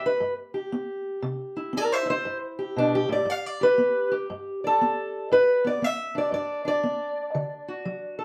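A fingerpicked steel-string parlour guitar carries this brief excerpt of acoustic country blues on its own, its dark, boxy tone sitting up front in the mix. The mood is swaggering and rollicking, with a swung eighth-note feel in 4/4 that gives the playing a loose, strutting gait. The guitar ranges from G2 up to F5 as it moves through a simple progression from G to C, back to G, and on to D at 7.4 seconds. A moderate studio reverb places it in a room with a live feel. At just over eight seconds, the clip is lifted from a longer piece.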